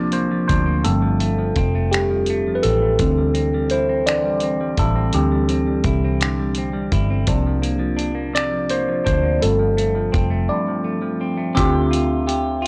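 Sultry and yearning, this slow R&B fragment sways in 6/8 at 56 BPM with a straight feel, tuned slightly sharp to A4 = 444 Hz. An overdriven tine electric piano sits up front through a combo amp, its barky, gritty tone colored by a phaser as it takes a solo that runs until 11.6 seconds, with a break arriving at 10.5 seconds. Beneath it, a vintage foam-muted fingered electric bass gives a dark, round, amped low end thickened by tube saturation. A semi-hollow electric guitar adds a clean, fingered second line with a hollow-body character, bathed in spring reverb. A dusty sampler-style kit of finger snaps, hi-hat and a thumpy kick sounds compressed and carries 12-bit grit. The harmony drifts through C9sus4, G9sus4 and D9sus4 before settling onto Dm11 at 11.6 seconds, all captured in a dry, hardware-recorded mix with a cassette-tape patina.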